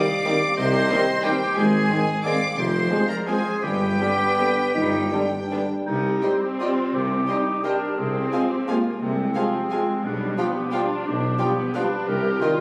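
Classical in a rubato 3/4, this bittersweet, sweeping passage cut from a longer piece sets a sul tasto violin section melody with light vibrato over a mellow clarinet, a pure silver flute and a very quiet second violin line, while violas carry expressive accompaniment. Distant, roomy French horns and trombones hold sustained chords beneath vintage-toned trumpet stabs, and a tuba, rich cellos and background double basses share the bass from 0.6 s, joined by a soft-attack bassoon accompaniment at 6.2 s. The sound is wet with scoring-stage reverb and was captured on a phone amid club ambience.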